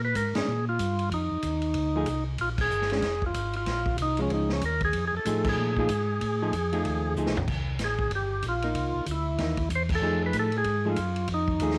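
A swinging 4/4 groove at 189 BPM drives this greasy soul jazz organ trio excerpt, where an up-front, percussive tonewheel organ with key click and slow rotary speaker carries the melody over a round, dark, lightly overdriven organ bass line with chorus vibrato, while a clean, picked hollow-body jazz guitar comps from 0.4 s and a vintage acoustic drum kit with a punchy kick and rolled-off top marks band accents and adds a fill at 7.2 s, all set in light reverb and studio ambience with vinyl crackle as the chords move from Bb7 through Bbm7 to F7#9 and C7#9.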